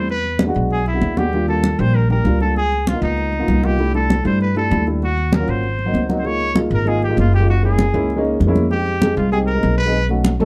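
Afro-Cuban jazz at a brisk 195 BPM in straight 4/4, this sunny, danceable excerpt from a longer piece sets a clear trumpet with light vibrato on a distant, roomy solo melody over a dark, mellow grand piano with short sustain. A woody, bright upright bass plays pizzicato up front, while high-tuned, damped congas with a thick skin sound join at 0.1 s. The lush extended harmony moves from E9 through chords such as Db13 and Ebm7, shifting into a new section at 6.3 s, all in a dusky studio production with moderate ambience.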